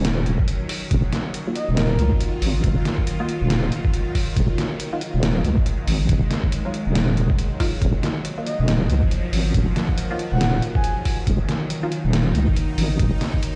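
An Ebmadd9 chord hangs in a tense, bright bowed-like drone with phaser over a deep, wobbling square-and-sine bass that sits up front, as muffled, pitched-down, overdriven sampler drums and a thumpy kick set a brooding half-time deep dubstep groove at 139 BPM in Eb minor, joined by mellow, muted dub chord stabs with echo in the background and a breathy flute-like lead with vibrato that surfaces at 1.6 s and again at 8.5 s, all ringing through a lush hall and stone-room reverb on a big sound system in this dark cut from a longer piece.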